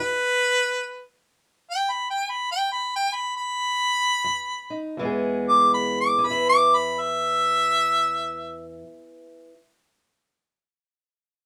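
Acoustic country blues in a swaggering, laid-back swing, this short excerpt from a longer piece is led by a harmonica playing a jazz-style solo up front, its tone warm and distant with light vibrato and scooped notes, heard through a roomy, moderate studio ambience. A dark, boxy fingerpicked parlour steel-string guitar sounds briefly at the opening, drops out during a stop while the tempo slows, and returns at 4.2 seconds to accompany the harmonica as the music moves into its second section at 5.0 seconds. The harmonica plays until 8.8 seconds, and the guitar carries on alone until 9.5 seconds.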